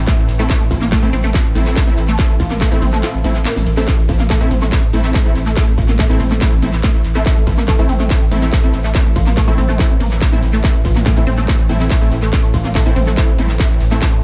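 A distorted, layered electronic kick, re-recorded in a large room, drives this intense peak-time techno cut from a longer piece, dropping out from 3.0 to 3.9 seconds while a drum fill enters at 3.5 seconds. Around it, a techno kit of cracking snare, metallic hats, handclaps, ride, shaker and toms pumps and repeats through tape echo, and a thick, saturated sine sub bass sits in the background under a very quiet, moody ambient pad drone. A squelchy, resonant blip pluck riff runs through phaser and cassette-tape grit, while an aggressive, bright sawtooth rave stab with chorus adds more echo to a dry but echo-heavy mix.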